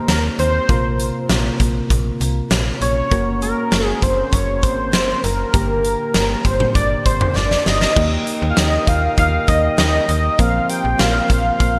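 Wistful yet bright, this synth-pop excerpt moves at 99 BPM in Eb major, with a thick, detuned sawtooth unison lead singing up front over soft, round electric-piano-like keys touched with chorus and a snappy FM bass with a metallic attack. A huge arena drum kit with a fat snare, punchy kick, toms, hi-hat and crash booms through gated reverb, rolling into a drum fill at 7.4 seconds. At 8.0 seconds a glassy, ethereal glass harmonica drifts in behind with sustained chords, all set in a lush hall and a gleaming 1980s-style digital sheen.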